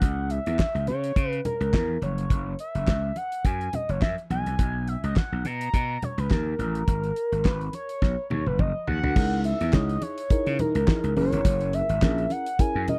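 An expressive synth lead carries the melody from the first second, smooth and up front with chorus and tape echo, over a growly, overdriven slap bass, a damped 70s drum kit with a fat snare and tight kick, and very quiet, ringing congas. This is danceable, late-night early-eighties boogie funk at 105 BPM in 4/4, swung on the sixteenths and set in C# dorian, with the harmony moving from C#m through F#5, Bmaj7(no3) and G#madd9 to B. A drum fill from 8.0 seconds leads into a new section at 9.2 seconds, where a mellow, round FM electric piano with chorus joins over C#m69 and F#9 chords. At 10.6 seconds a very quiet, brassy synth brass second line enters, detuned and sawtooth-edged, with vibrato and a filter sweep. The sound is dry and close, a 1970s-style studio recording with little reverb, where the lead, bass and drums all sit forward in this passage cut from a longer piece.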